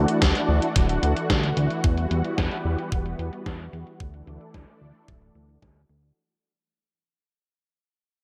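A straight 4/4 pulse at 111 BPM drives this moody, nostalgic synthwave clip, where a thumpy electronic kick and a gated 80s digital drum machine with low-pass-filtered hi-hat and gated-reverb snare sit beside a fat, detuned sawtooth analog bass, both the drums and the bass carrying filter sweeps, while a silky, bright analog string pad with ensemble chorus, vibrato and sidechain pumping holds slow-attack chords moving from Dadd9 to Emadd9 and back in a light reverb, as the whole piece fades out over its 6.2 seconds.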